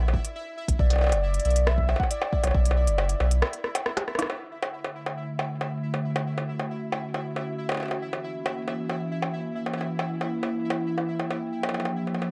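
A straight 4/4 pulse at 137 BPM drives this wistful, glitchy IDM fragment, where a crisp, tape-tinged kit of bongos, hi-hat and rim click runs throughout beside a deep electronic kick and a round sine sub bass that both drop out before a drum fill and band accent at 4.2 seconds, after which a warbling, nostalgic pad of detuned chords enters at 5.0 seconds under a filter sweep, while a velvety, wave-folded synth lead with vibrato and analog delay sings briefly at the start and returns near the close over a bright, pulsing gated texture, all moving from Bm through Dmaj7 and F#7 to Bb6 in a dry, gritty hardware sound with light digital ambience.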